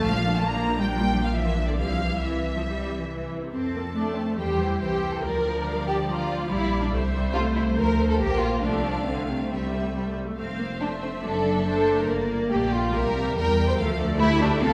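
In a straight 4/4 at 141 BPM, this urgent, stormy excerpt from a quick classical-period movement for string orchestra in F major sets a distant, intense first-violin melody above an up-front, soft-attacked second violin line, focused violas, background cellos and rich, even double basses, all bowed with vibrato in a wet scoring-stage reverb heard from further back in the room, as harmony moving through Bb, C, F and then D7/F#, Gm, C7 to Dm drives the music forward.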